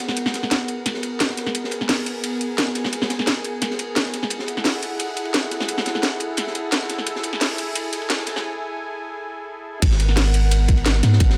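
Liquid drum and bass at 174 BPM with a dreamy, rolling mood, this excerpt builds for 9.8 seconds as a detuned sawtooth pad with chorus holds sustained G#m9 and F#m9 chords over a gritty, saturated breakbeat kit with a high-tuned snare and an up-front layer of cracking snare and metallic hats, then briefly breaks before dropping at 9.8 seconds into a deep, mellow sine 808 bass and a tight electronic kick, all set in light studio reverb.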